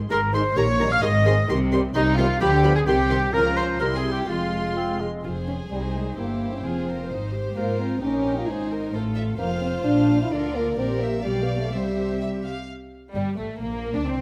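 A mellow French horn section holds sustained chords from 0.3 s to 12.4 s, giving this quick, spirited classical-period movement for symphony orchestra its glowing core in a brisk 2/4 with a straight feel. Two violin sections, soft-attacked and intimate with sul tasto bowing and gentle vibrato, carry the melody and a second line, while violas fill in the accompaniment and cellos join dark double basses on the bass. In the opening seconds the woodwinds add second lines together: an airy flute with rolled-off highs, a smooth-topped oboe and a clear, close-miked clarinet sitting in the background, all falling away around 5.0 s as a bassoon adds a brief vintage-tinged touch. The harmony moves through minor-key colours such as Cm, Fm and G7/B before a closing passage settles on Gsus2 and Bbadd9. A moderate scoring-stage reverb lends the lively ensemble a natural sense of space in this fragment cut from a longer piece.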